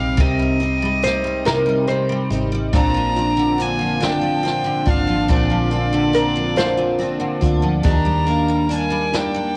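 A slow six-eight pulse at 47 BPM, counted in dotted quarters, carries this dramatic, aching pop ballad, with a jazz brush kit of boomy kick, medium-tuned snare and hi-hat entering at 0.2 s and sounding natural in its studio room. A bright, full-bodied picked steel-string acoustic guitar, double-tracked and up front with audible finger squeak, lays down the accompaniment, while a second, darker picked acoustic guitar sits in the background with arpeggios. Underneath, a vintage foam-muted fingered electric bass gives a round, punchy, amped low end. A single bowed violin carries the melody with a soft attack, played sul tasto for a pure, floating tone, and a woody, plectrum-plucked fretless oud with double strings adds a mellow second line from 1.0 s to 7.6 s. The harmony moves from Cm to Bbadd9 and settles on Ebmaj7, and the whole fragment, cut from a longer piece, has the light reverb, small-room ambience and cassette grain of a home recording.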